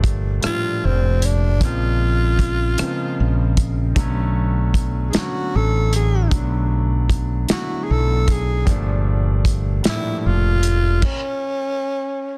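Sultry and yearning, this slow six-eight R&B passage is cut from a longer piece. A growling tenor saxophone carries the melody from 0.5 seconds, its breathy subtone roughened by raspy grit and jazz-style vibrato, with tape echo trailing its lines. Up front, a round, direct fretless electric bass sits beside the drum kit, whose tight kick, medium-tuned snare, rim click, hi-hat and dark crash cymbal come from a small room with a rolled-off top. A concert grand piano with deep bass and an open sound fills in the harmony, moving through minor ninth chords such as Gm9, A#m9 and Bm9. Piano and bass stop at 11.0 seconds and the drums a moment later, leaving the saxophone alone until 12.4 seconds in a dry, dense and heavily limited modern master.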